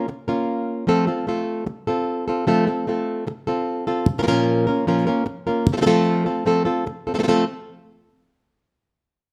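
Mournful yet fiery, this short flamenco fragment in F major moves at 150 BPM in a straight 4/4, drawn from a longer piece. A single fingerpicked acoustic flamenco guitar sits up front and carries the melody from 0.0 to 7.4 seconds, ranging from Bb2 to Bb4 over chords that alternate between Bbm and F. A moderate, large studio reverb gives the guitar's warm tone a spacious setting.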